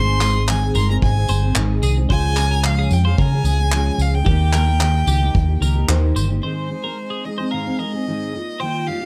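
A rich, smooth violin sings the melody up close, with steady vibrato, over a sunny, easy-going acoustic pop groove. A full-bodied, double-tracked fingerpicked jumbo acoustic guitar provides accompaniment and a clean, compressed twelve-string electric guitar with analog chorus plays arpeggios, while a woody upright piano sits mellow in the background and a round, foam-muted, punchy bass sits up front beside a vintage brush kit with tight kick, handclaps and tambourine in a pumping small room. Around 6.4 s the bass, drums and piano drop away, leaving the violin and the two guitars to carry this excerpt to its close.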